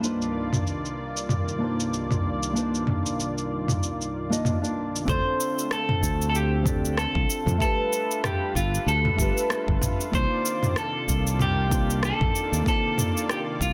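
Lightly reverberant and densely limited, this smooth sunset chillout piece rides a swung sixteenth-note feel, opening with a dark, thumb-plucked nylon-string guitar through delay, a thick, airy detuned pad with chorus, and an up-front deep house kit of cabasa, rim click and filtered toms. At 5.1 seconds a growly fretless electric bass and a deep, layered electronic kick arrive. A clean, picked electric guitar takes the melody up front, bathed in lush chorus and digital delay as the chords move from Dm7 through G9 back to Cm11.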